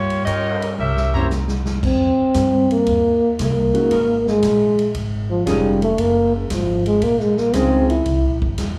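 A bucket-muted trombone, dark and veiled with scooped notes, takes a solo from 1.9 seconds in this energetic big band swing excerpt at 116 BPM, after a clear saxophone section and trumpet stabs with slapback echo open the excerpt and lead into a drum fill, while woody pizzicato upright bass, a swinging drum kit with a punchy kick, warm grand piano and smooth sustained saxophone chords fill out a live club sound heard through the PA.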